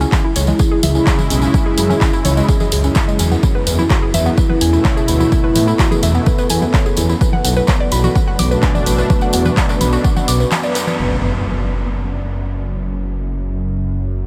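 Dark and hypnotic, this melodic techno excerpt moves at 127 BPM in F# minor, with an overdriven, punchy kick up front and a rumbling detuned saw bass beneath a deep, moody ambient pad and a woody, wave-folded pluck playing arpeggios through chorus and tape echo, all of these melodic parts breathing with sidechain pumping. A punchy analog drum machine adds low-pass-filtered congas, handclaps, hi-hat and crash cymbal alongside a jingly tambourine, while a brassy, nasal pad stabs in the background and a tense, string-like drone hums very quietly from 0.3 seconds. After a band accent at 10.5 seconds, the percussion and pluck fall away, an electronic impact lands at 11.0 seconds as the chords shift to F#m, and the ambient pad carries a filter sweep to the end, the whole mix dreamy and soaked in a huge reverb.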